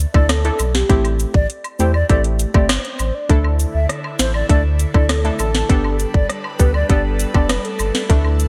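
Bright, dry 1980s-style digital production frames this tough, hypnotic dancehall excerpt. An up-front island pop drum kit with a tight kick, sharp snare and metallic hats under gated reverb drives it, joined by a round, deep sine sub bass, a punchy sawtooth synth brass stab with chorus, and cabasa and woodblock sitting dry in the background. A breathy, hollow silver concert flute with vibrato and delay carries the melody over a velvety synth lead with chorus and tremolo, while an airy, detuned pad with phaser and sidechain pumping enters at 3.6 s over chords moving from Dsus2 through Am7 to Gadd9.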